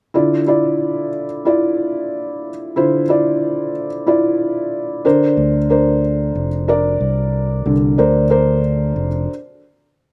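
A felt-muted upright piano, soft and intimate with audible action noise and a slapback echo, carries this bittersweet yet driving pop excerpt in D minor at 92 BPM, moving from Dmadd9 to Bbadd9 before a fingered electric bass, direct and amped, joins up front at 5.4 seconds and both stop together at 9.3 seconds in a dry outdoor sound.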